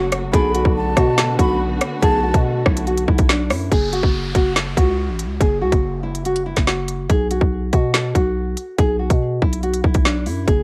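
Drill hip hop at 142 BPM in a half-time feel, menacing and tense, heard as a section cut from a longer piece with light reverb and small-room ambience. A fingerpicked classical nylon-string guitar carries the melody with audible finger squeak over a growling, buzzy 808-style bass and an up-front drill kit of hard-clipped kick, woody snare, crisp hats and rim click. A ringing, very quiet concert harp and dark, vibrato-laden bowed strings with portamento, the strings sitting in the background, play until 3.7 seconds. A breathy jazz flute with lifted highs and tape echo adds a brief, unsteady second line near the start, and an electronic downlifter sweeps in from 3.7 seconds as the chords shift from Bm7 to F#5 and then B5.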